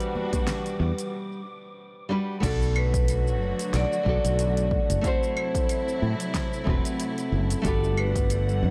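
Smooth, warm sunset chillout cut from a longer piece, where a ringing, full-toned vibraphone carries the melody with tape echo over a dark, fingerpicked nylon-string guitar and soft-bowed, intimate studio strings, while an airy, breathy wind-like texture hangs in the background until 1.1 s, a punchy overdriven electronic kick arrives at 0.3 s, a growly, up-front fretless electric bass enters at 0.8 s, and a deep house drum kit with a fat snare, metallic hi-hats, shaker, claves and crash adds a swung sixteenth-note lilt in an echo-heavy, lightly reverberant mix.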